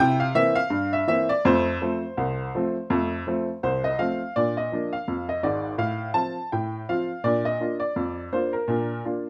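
A lightly swung 2/4 pulse at 83 BPM drives this short, cheerful ragtime fragment in B-flat major, cut from a longer piece. A single upright piano carries everything on its own, heard from 0.0 to 9.2 seconds and spanning a broad range from Ab1 up to A5. Its tone is woody and worn, a touch out of tune, and it sits up front in a natural, lightly reverberant space. The harmony opens on C7 and settles to F before a new section at 4.3 seconds moves through B-flat, F over A, and back to B-flat. The jaunty mood comes through in that clear, slightly detuned voice and the easy lilt of the swing.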